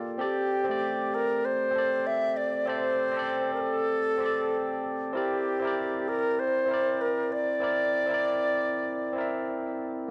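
A 55% swing on the 16ths at 97 BPM in 4/4 carries this relaxed, warm chillout excerpt, where a barky, clean tine electric piano through a combo amp with digital delay plays the accompaniment from 0.0 s and a bright, airy, wooden baroque flute, tongued and unsteady with vibrato, carries the melody through tape echo from 0.2 s, both up front, over D7sus4 moving to C9 at 5.1 s, all set in a moderate plate reverb and a worn cassette sound with warbly pitch drift.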